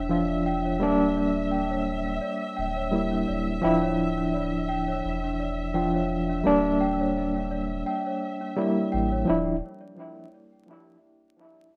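Swung sixteenths in 4/4 carry this brooding, cinematic trip hop fragment, where a gritty, overdriven reed electric piano sits up front with tremolo and tape echo, bell-like celesta arpeggios shimmer through delay and plate reverb, a lush bowed string section holds smooth chords until 9.3 s, and a deep, round dub sub bass anchors the Dmadd9 to Gm/D changes, all in a rough home demo mix with vinyl crackle and moderate room reverb, tuned slightly low to A4 = 435 Hz.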